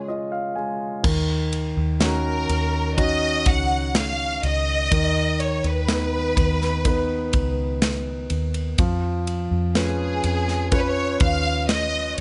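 A lush, vibrato-laden violin section carries the heartbroken melody of this slow 62 BPM pop ballad in Eb minor from the very start, while a concert grand piano with audible action noise and long sustain plays a fill until 1.0 seconds, when a dark, round, foam-muted electric bass and a punchy kick with bright cymbals on the drum kit join over Ebm7, B/D# and Db7/F, all set in a small room in this short cut from a longer piece.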